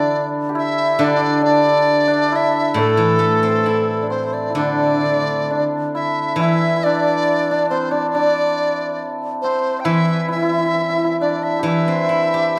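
A bright, reedy large dizi with a buzzing membrane and vibrato carries the melody up front in this graceful, wistful Chinese traditional chamber piece at a rubato 68 BPM in 2/4, over a shimmering hammered dulcimer second line and a silvery, fingerpicked steel-string zither accompaniment, all three playing throughout, bathed in a wet recital hall reverb as the music moves into a new section at 4.6 seconds in this passage cut from a longer piece.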